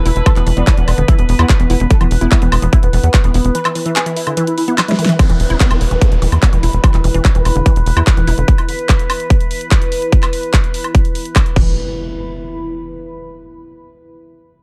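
This psychedelic trance excerpt runs at 146 BPM in a straight 4/4, with a hypnotic, alien mood and a dark, warm digital ambience. It opens mid-drop, where a punchy, overdriven electronic kick sits up front beside a big-room dance drum kit of crash cymbal, handclaps, hi-hat, woodblock and a huge snare, while a tight, nasal sequencer bass drives the low end. A woody, wave-folded pluck plays a riff with tape echo, and a thick, detuned unison lead carries the melody with vibrato and a phaser until about 5.1 seconds. A very quiet vowel-sweep wobble bass adds a brief second line at the start. Behind them, an overtone-sweeping drone and a deep, moody ambient pad hold sustained chords and texture with chorus and reverb, pumping against the kick. After a break and drum fill, an electronic downlifter enters at 5.2 seconds, the drums stop at 11.6 seconds, and an impact leads into a closing stretch where the pad lingers until 13.4 seconds.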